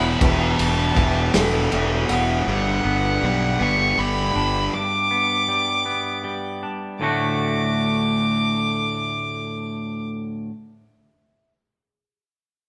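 Drenched in a big studio reverb that places the band live in one room, this cinematic, euphoric post-rock fragment in 6/8 sets a dark, reedy gut-string violin melody over twangy clean guitar arpeggios, with a felt-muted upright piano murmuring in the background until 2.5 seconds, a loose indie drum kit with punchy kick and dusky cymbals playing only briefly, and an overdriven guitar riff and round fuzz bass driving together until 4.7 seconds as the harmony moves from Em to G and finally D.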